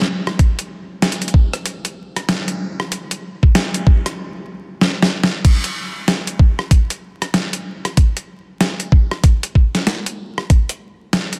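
Dense, heavily limited and dusted with vinyl crackle under a moderate plate reverb, this funky, playful glitch hop excerpt swings its 16ths as a thumpy, pitched-down electronic kick sits up front beside a gritty, compressed boom bap sampler-style kit of crash cymbal, hi-hat, rim click and medium-tuned snare, building up until a stop at 4.2 s, a drum fill at 4.8 s and a drop at 5.4 s.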